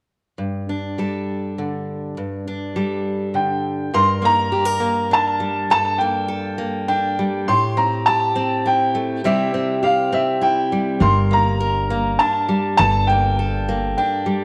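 In a straight 3/4 at 102 BPM, this melancholic, intimate folk passage in G dorian, cut from a longer piece, opens at 0.4 s with an up-front fingerpicked steel-string acoustic guitar moving through Gsus2, Gmadd9, Am7 and C. A boxy, woody upright piano takes the melody from 3.4 s, high in its register and touched with slapback echo. At 11.0 s a growly, thumpy pizzicato upright bass settles in on a low G, all of it framed in a moderate plate reverb.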